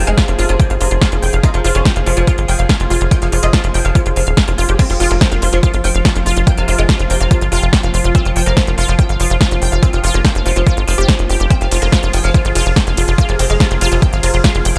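Set in a digital ambience, this psychedelic trance excerpt at 143 BPM in F minor has an alien, psychedelic mood, driven by an up-front, overdriven electronic kick and a tight sawtooth and square-wave sequencer bass with a moving notch. A big-room dance kit adds a punchy snare, crisp hi-hats, ride and crash cymbals, also run through overdrive and re-recorded in a large room, while a lush, detuned unison pluck plays a riff through delay with sidechain pumping. In the background, a bright, woody oud carries the melody through phaser and delay, and an evolving, warbling wavetable pad holds sustained chords with chorus and reverb.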